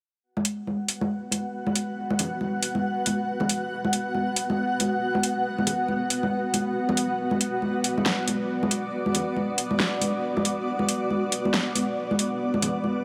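Deep dubstep at 138 BPM in B minor, with a half-time feel and a 60% swing on the sixteenths, this short cut from a longer piece sets a meditative, brooding mood. A dubstep drum kit of hi-hat and snare enters at 0.4 seconds, sitting up front with an electronic, layered production, a huge snare and metallic hats carrying a tape-warm tint. Congas arrive at the same moment, bright and acoustic with a vintage, band-limited tone, played with soft hands and trailed by dub echo. From 1.0 seconds a granular cloud pad holds sustained chords between B3 and F#5, its detuned unison of sine and sawtooth layers blurred and evolving, with slow attacks, long releases and its own built-in reverb. The whole piece rests on a B5 chord, and a huge ambient reverb gives the room a long, spacious tail that carries the parts to the close at 13.0 seconds.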